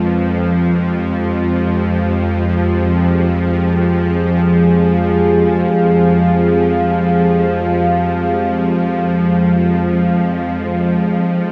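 Dark ambient drone in free time, unsettling and desolate, cut from a longer piece and bathed in a huge, wet reverb with a long decay. An up-front, string-like bowed drone, bright and tense with detuned sawtooth grit, a noise layer and vibrato, sounds from the start alongside a very quiet bronze singing bowl whose mellow, metallic ring beats slowly under a felt mallet. At 1.0 seconds a deep, moody pad of sustained chords enters, its detuned sawtooth and sub-octave tones shaded by chorus, shimmer reverb and a moving notch, with the harmony shifting to an A-flat minor chord at 8.3 seconds.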